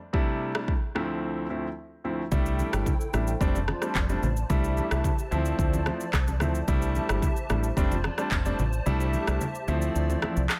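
A straight 4/4 afrobeats groove at 110 BPM opens with an electronic afro-pop kit of deep kick, handclaps, rim click and shaker up front beside an intimate grand piano, its action noise audible, accompanying on C6 and Dm7 before a break from 1.2 to 2.3 seconds. At 2.3 seconds a dark, round, foam-muted fingered electric bass, low-tuned thick-skinned congas in the background and a hollow, flute-like soft pad with ensemble chorus join, while the chords cycle through C6, F6 and Dm7 in C major. The kick drops out from 8.9 seconds in this sunny, romantic excerpt cut from a longer piece, set in light digital ambience.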